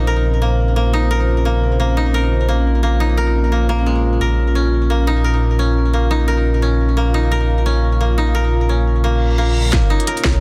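A dark analog pad with chorus, phaser and sidechain pumping holds sustained Bb minor chords under a filter sweep, joined from the start by bright, woody koto arpeggios with delay and a deep, rumbling detuned saw bass, until a reverse cymbal at 9.2 seconds leads into a distorted electronic kick and an industrial kit of clanging snare and crisp hats at 9.7 seconds in this cinematic, spacious half-time drum and bass passage at 174 BPM, cut from a longer piece.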